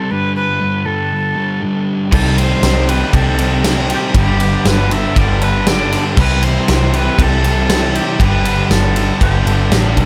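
This dry mix puts a big, natural-sounding acoustic drum kit and a round, foam-muted electric bass up front. The piece is shoegaze-leaning dream pop rock in a straight 4/4 at 119 BPM in G major, hazy and blissful in mood, and this is a short cut from a longer piece. From the start, a distant, airy jazz flute with a reedy chiff and crisp attack carries the melody through digital delay, over a thick, dark fuzz guitar riff. At 2.1 seconds the rest of the band arrives. The drums bring a punchy kick, a fat snare, and crash and ride cymbals. Three guitars sit in the background: a lo-fi, slightly broken-up guitar playing fingered arpeggios through analog chorus and delay, an overdriven hollow-body guitar riff washed in reverse reverb, and a tight, bright, double-tracked distorted riff. The harmony moves between Gadd9, Cm6 and C, and that shift to the minor chord gives the dreamy haze a bittersweet tint.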